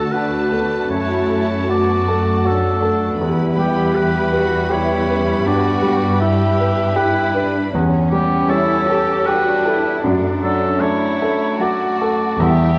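Classical and lyrical, this lush excerpt in a rubato triple metre sets a clear, up-front grand piano carrying the melody alongside a close, expressive violin section, with an oboe sounding distant and roomy on a second line and a further, more distant violin section adding another. Beneath them, a background viola section provides accompaniment and a dark French horn section holds sustained chords, while cello and double bass sections, both bowed with vibrato, anchor the bass as the chords move from D through Em to A7/E and back to D/F#. A concert hall reverb bathes the sound, and a worn, warbling cassette-tape quality gives the whole a drifting pitch.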